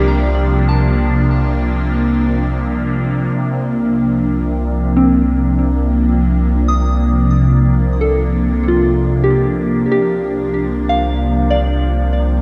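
In a straight 4/4, this spacious, melancholic ambient excerpt centres on an evolving, detuned wavetable pad of bright, sustained chords with phaser up front, over a deep, round sub bass. A soft, warbling FM synth bell spins chorused, delayed arpeggios, and a calm organ-like drone hums in the background until 3.4 s, while from 3.3 s a filter sweep runs through the pad. The whole mix sits in a wet, lush hall reverb, with a dark, warm production.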